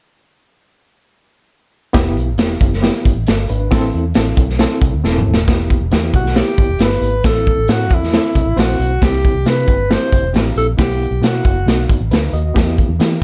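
Uptempo 1960s-style soul with a driving, passionate feel, this short cut opens at 1.9 seconds with a raw garage drum kit, gritty and up front with a punchy kick and a pumping small-room sound, alongside a round, foam-muted electric bass and a barky, reedy electric piano colored by light overdrive and fast tremolo. A drum fill at 5.0 seconds leads into the second section, where a breathy alto saxophone enters at 6.2 seconds with vibrato, carrying the melody up front over chords moving from E minor through A minor and C to a B suspension. The dark, warm production sits in moderate studio ambience.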